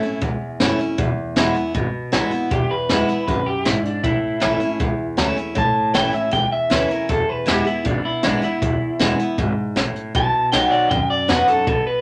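A rollicking, upbeat rockabilly excerpt in E mixolydian at 157 BPM opens at once with twangy, slightly broken-up electric guitar from a small old amp carrying the melody, a bright, full-bodied picked dreadnought acoustic playing the accompaniment up front, woody, thumpy pizzicato upright bass on gut strings, and a distant, roomy brush kit with a high-tuned snare, punchy kick and hi-hat. The harmony moves from A to E, back to A and E, then reaches B at 10.1 s. A moderate club reverb frames the lively, lo-fi sound, and the drums have a rolled-off top.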